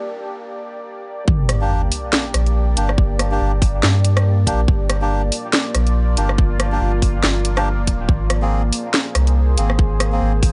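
Brooding and dark, this deep dubstep excerpt in G phrygian opens with a short break and filter-swept build-up carried by a moody, detuned sawtooth ambient pad with chorus and its own reverb, before the drop lands at 1.3 seconds over a half-time 141 BPM groove with swung 16ths. There, a round, soft sub bass sits up front beside a tight, overdriven electronic kick and a layered garage kit of hi-hat, rim click and cracking snare, while a sub drop rumbles in the background. Reedy, breathy melodica stabs, close-miked and dry apart from a dub echo, drift above as the harmony moves from Gm to Abadd9 at 8.1 seconds.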